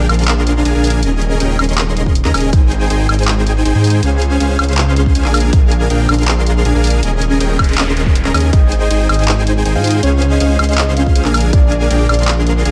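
Future bass in Ab major at 160 BPM with a half-time feel, this euphoric, lush excerpt pairs a huge, compressed supersaw riff carrying tape echo and sidechain pumping with a thick, detuned saw bass treated with chorus, over a pop drum kit of handclaps, warm hi-hat and woodblock. A punchy electronic kick sits up front in short bursts, most fully from 5.1 to 8.6 seconds, while a background noise sweep runs into 8.5 seconds. There a soft, round, octave-layered synth lead enters with chorus, phaser and delay over chords moving through Bb7, Eb7sus4, Abmaj7 and Dbmaj7, all in a dry, close mix.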